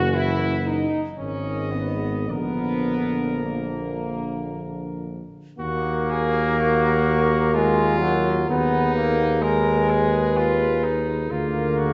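Classical brass band music in a hymn-like, elegiac vein, moving in a solemn, freely breathing triple time. A distant, roomy cornet carries the melody over a soft-edged French horn section on the second line, while a mellow trombone with light vibrato and a very quiet euphonium with vibrato fill in the harmony. An up-front tuba with a smooth top anchors the bass. The whole passage, cut from a longer piece, sits in a reverberant recital hall with a dark, rolled-off sound, shifting to new material at 5.6 seconds and closing on a dominant chord.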